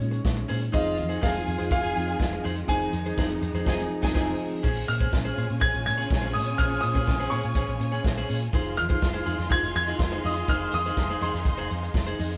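A clear, worn grand piano carries the melody over punchy, pumping vintage drums, a round hollow-body bass and lush, distant strings in this glamorous, driving disco excerpt, with a slightly broken-up guitar entering at 0.1 seconds, a smooth violin section joining at 0.7 seconds, and a mellow, slightly out-of-tune electric piano dropping out after 4.7 seconds, all set in a large studio room.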